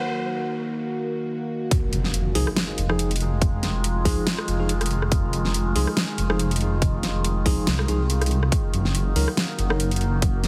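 The rhythm sits in a swung, half-time 4/4 pulse, giving this brooding, cavernous deep dubstep excerpt its heavy, dragging gait. It opens on a resonant, overtone-sweeping drone that holds sustained chords with chorus and built-in reverb, a short break and build-up before the drop lands at 1.7 seconds. There a punchy, tape-warm electronic kick and an up-front dubstep kit enter together, the kit bringing a huge snare, rim clicks and metallic, filtered hats, while a background impact sounds until 3.4 seconds. A dark, detuned saw bass rumbles and beats low underneath. A clean tine electric piano played through a combo amp adds background stabs with medium tremolo and dub echo. The whole mix carries a heavily compressed, radio-like digital ambience, and the harmony moves from Gb6 to Fm7 and back to Gb6.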